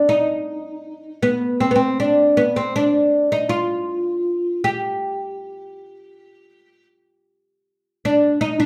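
An oud opens the recording at 0.0 seconds, carrying a longing, soulful Arabic melody that continues until 8.7 seconds. Its plectrum-plucked double strings sound bright and woody, and the fretless instrument sits up front in the mix. The line stays within a modest span from B3 to G4, moving in a straight 4/4 feel. A large studio reverb with a 0.9-second tail adds a wet sheen around the oud, with the sense of musicians playing live together in one room. This short passage is cut from a longer piece.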